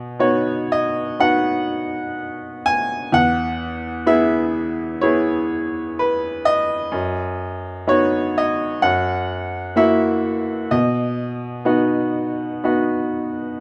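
Calm and warm, this lyrical classical solo piano passage in B major unfolds at 63 BPM in 4/4 with a gently rubato feel, cut from a longer piece and tuned slightly below standard pitch at A4 = 436 Hz. A bright, woody upright piano with a smooth, vintage character sits up front, spanning E2 to G#5 as it moves from B through E, B/F# and F#7 before settling back on B, with a brief fill from 13.2 to 13.6 seconds. Close, detailed microphones capture the instrument in light reverb.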